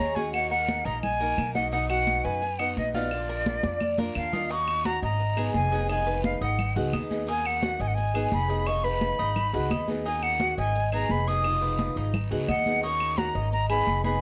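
Sultry and danceable, this short cut from a longer Cuban son and guajira piece moves at a brisk 173 BPM in Eb minor. An airy, expressive jazz flute carries the melody up front with vibrato and a soft attack, while a pizzicato upright bass sits close by with a dark, woody tone. A picked archtop guitar with a boxy sound fills in the accompaniment, and a Cuban tres with doubled, metallic-edged strings plays arpeggios through a tape echo. Bright, high-tuned congas played with soft hands enter at 0.2 seconds alongside a raspy, saturated guiro, with claves adding a woody click from the background. A drum fill at 3.6 seconds leads into a passage that cycles through Ebm7, Abm7 and Fm7b5, all set in a moderate studio room.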